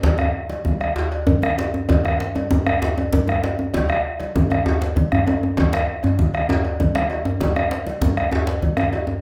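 A driving, powerful West African drum ensemble in 12/8 opens at once with a round, up-front bombo and a deep, up-front djembe, sounding together with a tight, cracking second djembe, thick-skinned congas struck with hard hands and a metallic cowbell, all playing live together in one room with a wet studio reverb for a short section cut from a longer piece that ends at about 9.2 seconds.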